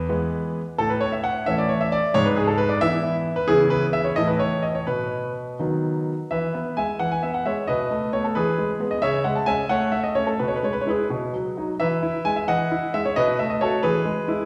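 A brilliant grand piano plays alone through this elegant, playful 14.5-second excerpt of a classical-period sonatina, moving in a flexible rubato 6/8 at 88 BPM and settling into E major with chords such as C#m7, B7 and A6 before returning home to E, all heard from further back in a reverberant recital hall.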